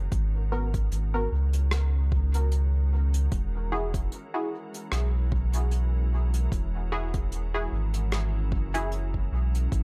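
A calm, organ-like pad fades in with ensemble chorus and its own reverb over a round, warm sub bass in this spacious, deep ambient dub excerpt at 75 BPM with a gentle sixteenth-note swing, as an overdriven electronic kick and a soft brush kit with hi-hat and rim click enter at 0.1 seconds, and muted, plucky filtered chord stabs with lush chorus and dub echo join at 0.5 seconds over G#m7 and Eadd9, all set in a small room ambience.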